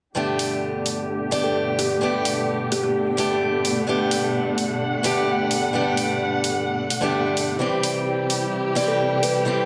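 Festival progressive house at 129 BPM in G major, this anthemic, uplifting clip opens with a bright, boxy picked archtop guitar carrying delay, joined at 0.2 seconds by a dark, up-front string section sustaining chords with vibrato and portamento under a low-pass filter sweep, then at 0.4 seconds by a layered, tape-tinged electronic hi-hat recorded in a large room, and at 1.3 seconds by a woody, hollow kalimba melody with tape echo, all moving from Gadd9 to C in a dreamy mix soaked in plate reverb.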